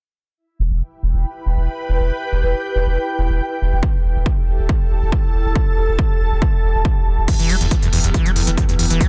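Relentless and dark, this short cut of driving peak-time techno in E minor at 139 BPM opens with a thick, saturated sub bass and an ethereal, phased pad pumping under the sidechain, adds a heavy, up-front electronic kick at 3.8 seconds, then at 7.3 seconds brings in a squelchy, screaming acid line with tape echo alongside a techno drum kit of smooth hats and crash cymbal, while an eerie, metallic FM drone warbles in the background of the dense, heavily limited mix.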